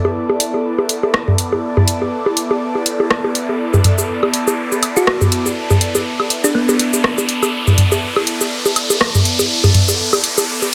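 A moderate studio reverb gives this clinical, quirky minimal techno excerpt a tidy, compact sound, shaped as one long build-up with an electronic riser running underneath from the start. Dry, up-front electronic bongos, toms and woodblock carry a swung pulse beside an airy, breathy pad coloured by chorus and phaser, and a layered house kit of tape-toned hi-hat, rim click and shaker joins at 0.4 seconds. Between 5.0 and 7.2 seconds a round, tine-like thumb-piano synth pluck adds a brief, mellow line trailed by digital delay.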